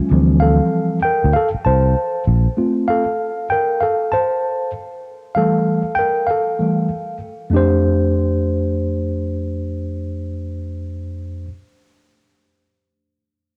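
Hip hop excerpt at 97 BPM in F major with a smooth, swung 16th-note feel, where a worn, slightly out-of-tune tine electric piano sits up front and carries the lead through Dm11, G9sus4/A and Fmaj9 before settling on Fadd9 at 7.5 seconds, joined from 0.1 to 2.5 seconds by a growly, punchy fretless electric bass, the whole recording steeped in warbly cassette pitch drift, light reverb and small room ambience.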